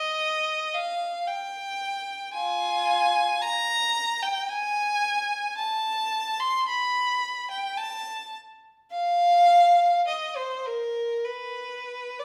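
Rubato in a slow 3/4 around 46-59 BPM, this mournful, meditative classical passage, cut from a longer piece, features a single unaccompanied violin whose rich, smooth bowed tone carries vibrato across a range from F4 to C6 for the full 12.2 seconds, set in a church or concert hall reverb that lingers 1.2 seconds.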